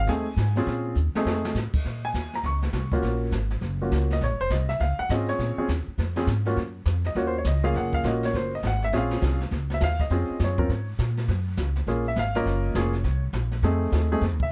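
Smoky and cool, this brisk 204 BPM swinging jazz piano trio excerpt in Bb minor features a present, up-front baby grand piano soloing over a woody, thumpy pizzicato upright bass and a distant, roomy brush drum kit with dark cymbals and a boomy kick, which adds a short fill at 1.0 seconds before the harmony settles into moody Bbm7, Gbmaj9 and Ebm7 changes, all within a dark production with light reverb.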